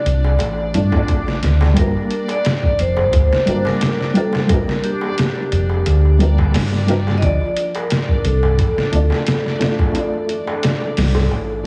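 A round, punchy dub bass with tube saturation sits up front in this hypnotic, smoky trip hop excerpt at 88 BPM in G minor, entering at 0.1 seconds together with a gritty, pitched-down sampler drum kit with a thumpy kick and lightly swung sixteenths. A ringing, bright vibraphone carries the melody through tape echo, over a soft felt-muted upright piano with audible action noise, tremolo and echo of its own, while a crisp metal-shell darbuka sounds distant. A reversed, granular swelling texture drifts dreamily in the background as the harmony moves from Dm to Gm and back, all under a heavily compressed radio sound with light reverb.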